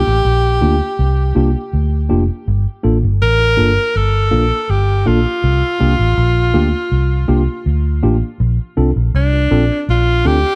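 Lovers rock reggae with a smooth, tender mood, heard here as a short cut from a longer piece in a straight 4/4. A clear tenor saxophone carries the melody up front, its light vibrato and smooth top given a pop-style solo voice and trailed by tape echo. Beneath it, a vintage muted fingered electric bass sits forward in the mix, dark, round and foam-muted, with an amped electric tone. A mellow tine electric piano enters at 0.6 seconds with clean accompaniment heard through its built-in speakers. The harmony moves from C7sus4 to Gm7, back to C7sus4 and on to Bbmaj7, all set in light reverb and small room ambience.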